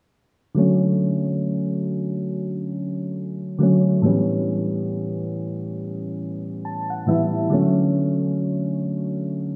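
Soft, round electric-piano-like synth keys open at 0.5 s, playing a longing, sensual R&B accompaniment with a swung sixteenth-note feel, moving from Dmaj7 to A9 and back to Dmaj7. The mellow keys sit up front with a gentle chorus shimmer, and they add a short fill at 6.2 s. A lush hall reverb and a low-pass filter soak this short excerpt in a dreamy haze.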